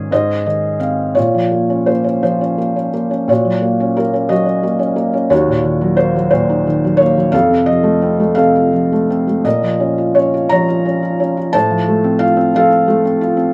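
A dark, lightly reverberant recording places a felt-muted upright piano up front, its soft, mellow tone intimate and close enough that the action noise is audible. This tender, peaceful classical excerpt in Bb minor moves at 58 BPM in a rubato 6/8 with uneven beats, opening with a brief felt piano fill before settling at 1.2 seconds into a lyrical passage over chords such as Bbmadd9, Gb/Bb, Ebm7 and F. The solo piano ranges from Eb2 to Bb5 and plays throughout the 13.5 seconds, as a fragment cut from a longer piece.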